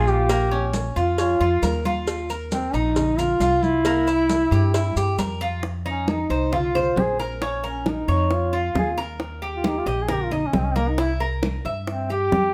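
Danceable and warm, this Cuban son and guajira excerpt moves at 135 BPM in a straight 4/4, with a minor-leaning progression that starts on Bbm and passes through Ebsus2 and C7. A mellow duduk carries the melody up front, its distant, roomy tone shaded with vibrato in a folk style, and from 5.6 seconds it takes a solo as the second section begins. Beneath it, a Cuban tres plays picked arpeggios on metallic double strings, some doubled at the octave. An up-front upright bass gives a woody, dark, thumpy pizzicato from gut strings. The percussion includes close, dry, low-tuned cowbell and bongos with a round sound, bright congas in the background with thin skins and hard hands that have a vintage, band-limited character, and grainy maracas, also in the background, that stop at 5.6 seconds. Light reverb gives the whole mix a modest sense of space.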